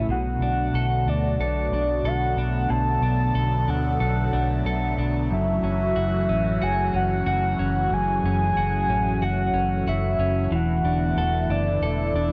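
Melancholic and hazy, this dream pop excerpt moves at 92 BPM in B minor, drifting from Bm7 to F#m7 and on to E7sus4. A soft, triangle-toned synth lead layered with a sub octave carries the melody with chorus, vibrato and tape echo, while a clean, compressed electric guitar picks arpeggios through its own tape echo and subtle chorus. Beneath them a swirling, detuned sawtooth pad holds slow-attack chords through phaser and chorus, and a foam-muted fingered bass sits round and punchy up front, the whole captured as a dry, gritty hardware recording touched with light digital reverb.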